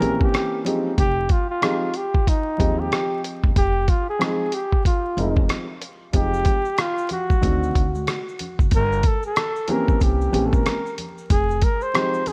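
A swung 93 BPM groove in 4/4 from a compressed, muffled sampler-style kit, with a thumpy kick, hi-hat and rim click up front, drives this cool, mellow jazz-hop clip in F minor. Woody pizzicato upright bass on gut strings and a warm baby grand piano with short sustain move through chords such as C7b9, Fm9 and Gmadd11. A breathy, whispered flugelhorn carries the solo melody with vibrato, scooped notes and a soft attack, touched by analog delay, while ringing maracas and congas in the background enter at 6.1 seconds, all under light reverb and vinyl crackle.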